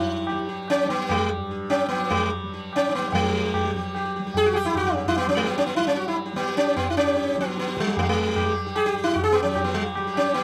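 Set in a triple metre with a straight feel, this Hindustani classical excerpt speeds up over its length. The mood is radiant and meditative. A round, plectrum-plucked sitar carries the melody up front, its sympathetic strings adding a shimmering halo. Beneath it, a bright, softly plucked tanpura holds a buzzing drone from the first moment, and a low-tuned, ringing tabla joins at 0.3 seconds with a vintage, band-limited character. After an opening passage, a new section begins at 3.1 seconds and runs to the end, all within a moderate small-room ambience.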